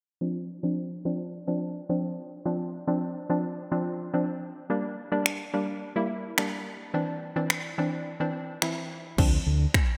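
A hollow, warbling square-wave pluck opens the excerpt at 0.2 s, its detuned, chorused tone playing a bouncy accompaniment under a sweeping low-pass filter and sidechain pumping. This bittersweet yet energetic dance-pop fragment moves at 107 BPM in a straight 4/4 in D minor, cycling through Dm7, Gm and Cadd9 before returning to Dm7. At 5.3 s an up-front electronic pop drum kit arrives with a punchy kick, finger snaps and a crash cymbal, its layered hits soaked in gated reverb. A round, warm fingered electric bass appears briefly at 9.2 s on a low D, pumping in time with the sidechain. A lush hall reverb and bright 1980s-style digital production give the short excerpt a glossy, spacious vintage sheen.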